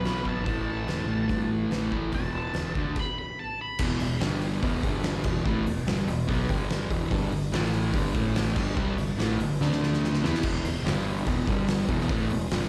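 A dark octave-fuzz lead guitar with wah, slapback echo and digital delay opens this smoky, brooding blues rock and southern rock excerpt at 144 BPM, over a double-tracked, compressed fuzz guitar riff, a growling, bright overdriven fingered bass and an oversized low-tuned drum kit with a boomy kick and fat snare, until a stop at 3.0 seconds ends the lead's phrase at 3.8 seconds. The trio then settles into a heavy E minor riff on power chords, with a drum fill at 9.6 seconds, all heard as a live gig through the venue's PA with club reverb.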